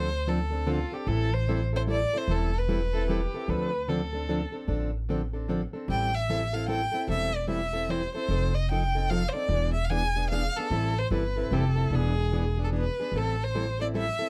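This short excerpt is acoustic string swing in the jazz manouche style, moving at 150 BPM in a swung 3/4 in A minor, with a virtuosic yet bittersweet mood. A bowed violin carries the melody up front, and its soft attack, vibrato and portamento give it an expressive, warm voice; it pauses at 3.4 seconds and returns at 5.9 seconds. A second bowed violin with a smooth top adds a quieter supporting line near the start, ending at 4.7 seconds. Beneath them, a picked, boxy parlour-style steel-string acoustic guitar, plugged in and up front, supplies the accompaniment as the chords move from Dm7 and Am7 through F7 and E7. A pizzicato upright bass on gut strings sounds woody, dark and thumpy at the front of the mix. The recording is dry and closely miked, with a detailed sound.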